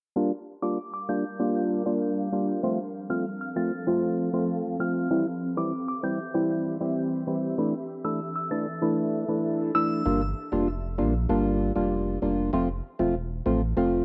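Dancehall with a tough, bouncy feel, cut from a longer piece, built on a hollow, organ-like stab that runs from 0.2 seconds to the end, up front with chorus and a cassette-tape grit, while a glassy, crystalline FM bell carries the melody high above through tape echo. An ethereal, airy pad sits in the background with ensemble chorus and phaser, and a filter sweep runs through the opening stretch over chords moving from Gm7 through F, C and Dsus2. At 10.1 seconds a deep, round sub bass arrives to anchor the final section as the Gm7 and F chords return, all under a moderate spring reverb and the soft, dulled sheen of a home cassette recording.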